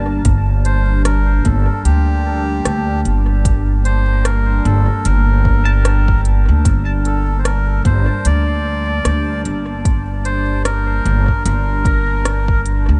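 A woody, pizzicato upright bass sits up front, holding down the low end of this hazy, deep ambient dub cut from a longer piece, set in G minor at 75 BPM in 4/4 with a 16th-note swing. Beneath it, a deep, tape-warm electronic kick and a crisp, produced kit of hi-hat and rim click carry small-room ambience, with dub echo trailing the lighter percussion. A smooth, warbling analog pad holds sustained G minor chords throughout, its detuned, mellow tone softened by subtle chorus. From 0.7 seconds a reedy, breathy melodica carries the melody with a dark, nasal edge and its own dub echo. At 4.1 seconds a twangy pedal steel guitar joins in the background, playing slide arpeggios with volume swells through tape echo, its clean, bright tone set against the dusky haze of the rest.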